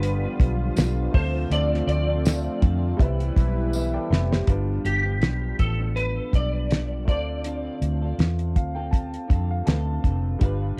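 Hazy cassette home recording with light reverb frames this wistful bedroom-pop fragment, where a clean lap steel played with fingerpicks carries the slide melody through ensemble chorus and analog delay until 8.2 s, a woody, slightly detuned upright piano and a twangy, slightly broken-up electric guitar with warbly pitch drift accompany, a smooth sawtooth pad holds chords until 4.5 s, a round, foam-muted bass and a damped 70s drum kit with fat snare sit up front, a jingly tambourine appears briefly, and piano and drum fills lead into the second section at 4.5 s.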